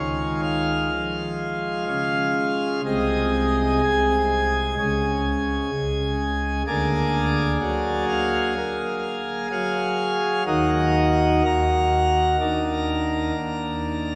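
A pipe organ on a full plenum sound leads this solemn, grave chorale-style classical passage, its brilliant mixtures and baroque voicing placed up front as it plays alone across a range from C2 to Bb5. The 4/4 pulse moves with a rubato feel, and the harmony travels from Db through Ab/C, Bb7/D and Ebm before resting on Bb/Eb. A wet cathedral reverb with a 4.9-second decay surrounds the organ in this 14.2-second excerpt cut from a longer piece.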